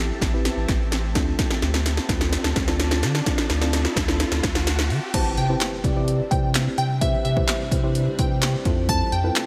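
A punchy analog drum machine drives this summery, euphoric dance-pop excerpt in a straight four, with kick, snare, handclaps, hi-hat and crash set up front, and a short room sound on the snare, clap and hats. Under it, a thick, saturated sub bass pumps against the beat, while a deep, mellow chord stab with a nasal, dark edge joins a shimmering, ethereal pad that sits in the background, both softened by a low-pass filter and carrying chorus and sidechain pumping. The opening is a build-up, with a drum fill and a riser in the background moving over Am7 and Dm7 chords. At 5.1 seconds the drop arrives on Cmaj7 with an impact, and a glassy, crystalline wavetable pluck enters with the melody, detuned and chorused, before the harmony shifts to Fmaj7. A lush hall reverb and a bright 1980s-style digital sheen frame the whole piece.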